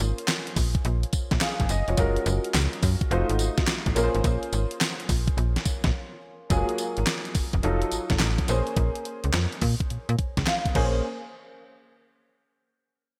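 A swung sixteenth-note groove in 4/4 drives this slick, bouncy new jack swing excerpt, with a clean 12-bit drum machine up front: thumpy kick, fat snare, handclaps, hi-hat, tambourine and crash, all bathed in gated reverb. A snappy, metallic FM slap bass and an intimate grand piano, its action noise audible and its tone treated with ensemble chorus, trace a Bbm9, Gbmaj9 and F7b9 progression. A brief break arrives at 5.9 seconds, and a piano fill at 10.2 seconds closes the phrase before the parts stop around 11 seconds, all within a bright 1980s-style digital production.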